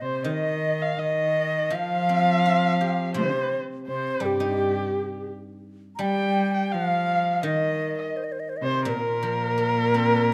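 Graceful and tender, this Chinese chamber ensemble piece in C yu mode moves in a free, rubato 4/4 around 84 BPM, cut from a longer work. An airy, bright bamboo xiao carries the melody with vibrato and a soft attack, while a dark, up-front erhu with expressive portamento and a reedy, gut-string cello in period style shape the second lines, each bowed by a single player. From 0.2 seconds a silvery, ringing guzheng played with fingerpicks adds accompaniment, and the ensemble sits in a moderate recital hall reverb captured by close, detailed microphones.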